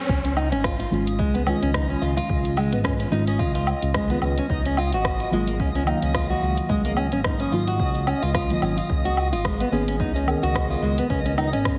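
A fingerpicked nylon-string guitar sits up front, its deep classical tone spinning arpeggios through a delay in this earthy, peaceful piece of organic downtempo, cut from a longer track. Beneath it, a smooth sawtooth-and-square synth bass with vibrato pumps against the sidechain, while an electronic kick with a tape-warm, roomy depth anchors a softly swung afro-pop kit of dark hi-hats, rim clicks, shaker and woodblock. A twinkling granular texture with an octave-up shimmer blooms in at 0.5 seconds, high and faint, and muted felt-like synth keys enter at 0.9 seconds with an intimate, full-bodied tone, a noise layer and sub octave, chorus, delay and the same sidechain pumping. The harmony moves from Dbadd9 to Ebmadd9 at 4.5 seconds and then to Abmadd9. A lush hall reverb surrounds the mix, but heavy multiband compression and a dulled top end give the whole a compact, radio-like sound.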